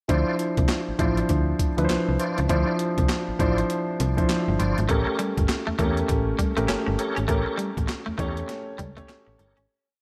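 Bouncy and punchy, this short new jack swing piece in D minor moves at 100 BPM with a hard-swung, gritty sampler-style breakbeat of thumpy kick, hi-hat and snare layered with handclaps. A snappy, metallic FM slap bass line carries muted ghost notes and chromatic approach notes, while dark, mellow grand piano pushes up-front drop-2 chords with grace notes and a tonewheel organ adds short syncopated stabs colored by key click, chorus vibrato, fast rotary speaker and delay. At 4.9 s a bright, twangy, muted clean electric guitar line with lush chorus joins as the harmony shifts from Dm9 to A7b9, and the piece sits in a light reverb before fading out from 7.3 s.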